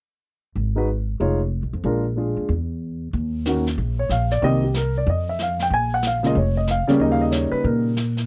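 A dry, close 1970s-style studio sound frames this smoky, moody swinging jazz piano trio excerpt: a woody pizzicato upright bass enters at 0.6 s, a dark, mellow grand piano with short sustain carries the melody up front from 0.8 s, and a brushed kit with a boomy kick and medium-tuned snare joins at 3.1 s, all over changes moving through Fm7b5, Bb7, Cm7 and Bbm7 before arriving on Eb7.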